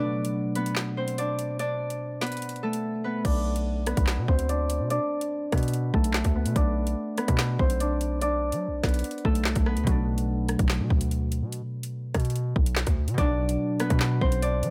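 A half-time drill groove in 4/4 drives this dark, cold hip hop excerpt, its electronic kit sitting up front with a hard-clipped kick, woody snare, metallic hi-hats, rim clicks, handclaps and crash cymbal. Over it a bright Celtic harp carries the fingerpicked, ringing melody from the opening moment, while a mellow concert harp adds fingerpicked accompaniment in a lower register, both softened by a low-pass filter. At 3.2 seconds the music shifts into its second section as a punchy, heavy 808-style bass arrives, its sine tone layered with noise and given a fast attack that decays. The concert harp drops out just after and returns at 9.8 seconds, while a filter sweep runs through the middle stretch. Light reverb and a digital ambience give the whole track a chilly space.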